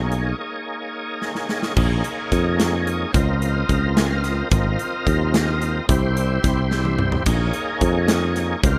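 A tense, intricate progressive instrumental in 5/8 at 218 BPM (eighths), in Bb dorian, opens with a shouting, lightly overdriven tonewheel organ with key click, chorus vibrato and a slow rotary speaker, over a growly, up-front fretless electric bass, as a big rock drum kit with bright cymbals and a punchy kick comes in at 0.1 s. A break from 0.4 s ends in a drum fill, and the organ adds a fill of its own at 3.7 s as the chords move from Bbm through Db, Ab and C back to Bbm. The sound is a rough home demo mix with light reverb, cut from a longer piece.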